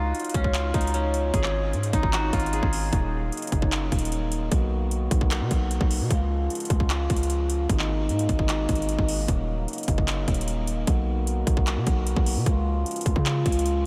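A brooding, melancholic trap cut opens with a silvery steel-string zither, played with fingerpicks and ringing through a low-pass filter and analog delay, over a punchy, heavy 808-style sine bass with a noise layer and a fast, decaying attack. From 0.1 seconds an electronic trap kit drives a half-time feel, with a hard-clipped kick, metallic hi-hats and handclaps, all overdriven and re-recorded in a small room so they sit up front beside the bass. At 2.9 seconds a mellow, distant French horn section enters with sustained classical-style chords, adding a roomy ensemble layer alongside the beat. The zither drops out at 4.9 seconds, leaving bass, drums and horns to cycle through moody chords such as Ebm7, Bmaj7 and Abmadd9. The whole mix is dreamy and soaked in a huge ambient reverb, giving this fragment of a longer piece a hazy, cavernous atmosphere.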